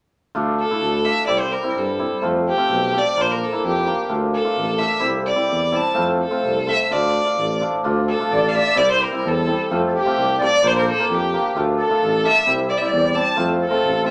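Klezmer in a soulful, bittersweet mood, this excerpt moves in a straight two-beat metre and gradually speeds up throughout. A ringing hammered dulcimer sits up front with acoustic, shimmering accompaniment, while a mellow tuba supplies a roomy, distant bass line in a jazz style, colored by light vibrato and scooped notes. Over them, a single bowed violin carries the melody with a rich, smooth and even tone, shaded with vibrato. At 8.1 seconds a reedy musette accordion joins as a second line, its musette tuning giving a vintage, band-limited color. The whole ensemble sits in a wet club reverb, while the harmony cycles through minor-key changes that return twice in matching sections.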